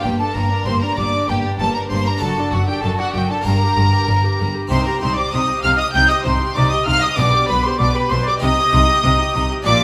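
Dramatic and driving, this excerpt from a baroque-style concerto movement in G minor moves at 97 BPM in a straight 4/4, cut from a longer piece with solo episodes. A hollow, airy wooden flute, close-miked with vibrato and a tongued attack, carries the melody together with a dark violin section of gut-string tone. Beneath them, a rich chamber violin section plays a second line with light vibrato, while a nasal viola section fills in the accompaniment alongside a brilliant, full-bodied harpsichord. The bass is anchored by a reedy cello section and a double bass section, both bowed in period style. The harmony moves from G minor through D/F# and back to G minor, then on to C minor and G/B before settling on C minor again, and the whole ensemble sits in the wet reverb of a recital hall.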